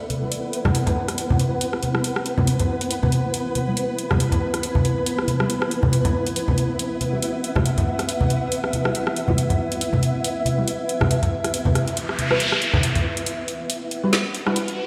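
A half-time groove at 139 BPM in 4/4, swung at 56% on the sixteenths, anchors this heavy, cavernous deep dubstep excerpt in E minor, tuned to A4 = 444 Hz and cut from a longer piece. Up front, an electronic, layered garage kit sets woody snare and rim clicks against metallic hi-hats, beside low-tuned congas with a thick-skinned, soft-handed acoustic tone from a small room. Further back, a muted, detuned sawtooth and square-wave dub chord stab with a fast pluck carries phaser, ensemble chorus and dub echo, and a filter sweep runs across it until 13.3 s. Above, a granular cloud pad holds blurred, evolving chords through its own reverb, while a flickering, grainy triangle texture sits beneath it. A noise sweep arrives at 11.9 s, and the harmony moves from Esus2 to Emadd9 as a riser drives the build-up to the end. The mix is bathed in a lush 1.7-second hall reverb and stone-room ambience, as if played on a big sound system in a bare room.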